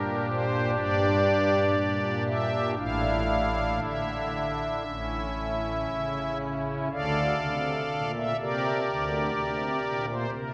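A lone pipe organ on soft, shimmering string and celeste stops opens this solemn, grave chorale-style classical passage, moving in a slow, rubato 4/4 with romantic voicing that sits up front. Its chords travel from Gm through a suspended A that resolves at 4.9 seconds, then settle on Dm at 6.9 seconds before closing on Gm over a D bass. A long, wet cathedral reverb surrounds the organ throughout this brief fragment taken from a longer piece.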